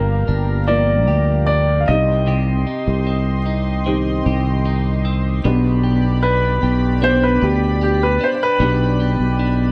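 A heartbroken pop fragment at 76 BPM opens with a warm grand piano singing the melody up front over a soft, felt-muted upright piano in the background, a growly, punchy fretless bass, picked arpeggios from a clean, scooped electric guitar and a shimmering, detuned pulse-width pad with slow attack and chorus, all moving through Gm7, Cm and G/B in a dark, warm small room.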